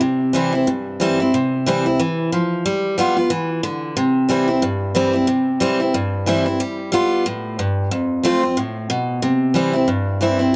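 A lone picked steel-string acoustic guitar carries the excerpt, its dreadnought body sounding bright and full-bodied and sitting up front in the mix. This is rowdy, upbeat rock in C major at a brisk 182 BPM in 4/4, with the eighth notes swung for a loose, bouncing feel. The guitar ranges from F2 to F4 and carries analog delay, heard within a moderate small-room ambience. Its opening phrase moves from C to G7 and back to C, then repeats from 5.3 seconds, this time passing through G7 and F before resolving on C at 9.2 seconds. The passage ends at 10.5 seconds, clearly cut from a longer performance.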